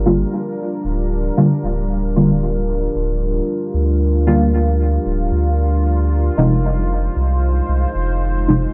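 A nocturnal, cavernous dub techno excerpt in a swung 4/4, where a deep, moody pad holds evolving, detuned chords under chorus and its own reverb, a round sub bass sits up front with tube saturation, and soft, full-bodied chord stabs with a filter sweep decay through chorus, phaser and dub echo over Gm7 moving to Fm7 at 6.4 seconds, all in a dry, gritty hardware sound with light reverb.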